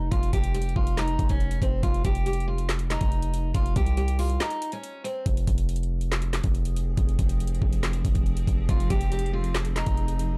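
This brooding, menacing trap hip hop excerpt moves in a half-time feel, set in a dark digital ambience. A bright picked steel-string acoustic guitar carries the melody through a low-pass filter, falling away at 5.2 seconds around a short break and returning at 8.7 seconds. Underneath, a distorted 808-style bass sits up front, saturated and aggressive, with a fast attack and a noisy grit layered over its sine core. The electronic drum kit is equally forward, pairing a knocking kick and woody snare with metallic hi-hats and handclaps. From 6.6 seconds a granular cloud pad drifts in with detuned, blurred sustained chords, its phaser and built-in reverb adding an evolving haze over the minor-key harmony.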